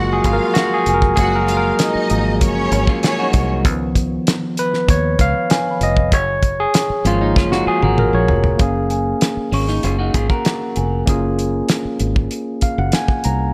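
A lightly reverberant small-room sound frames this smooth, lush 1970s-style soul excerpt at 97 BPM in F# major, where a gritty, barky overdriven tine electric piano solos up front over fingered electric bass, a cloth-damped kit with a fat snare and tight kick, delicate bell-like celesta in the background, and bowed strings with vibrato and portamento that drop out at 3.5 seconds, while a slightly broken-up electric guitar riff enters at 2.9 seconds and a drum fill leads into the second section at 8.6 seconds.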